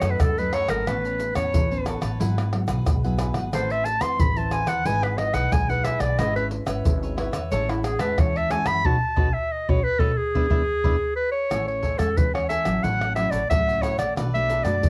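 This home cassette recording sits in a small booth with a moderate, short ambience, and the clarinet, cavaquinho and nylon-string guitar carry a cassette-tape color. It is a lively, joyful samba and choro at 90 BPM in a straight 4/4, cut from a longer piece and starting in E major. Up front, a clear, punchy clarinet in classical style plays the solo melody over a crisp, picked cavaquinho tucked in the background and a full-bodied, fingerpicked nylon-string guitar with a deep classical tone. A woody, dark pizzicato upright bass anchors the low end, while egg shaker, pandeiro, tamborim and a tight surdo, played with hard hands, sit forward in the mix. The band hits an accent from 8.8 seconds, and at 11.5 seconds the music moves into a new section in A major, with chords drifting through Amaj7, F#m7/A and Bm7.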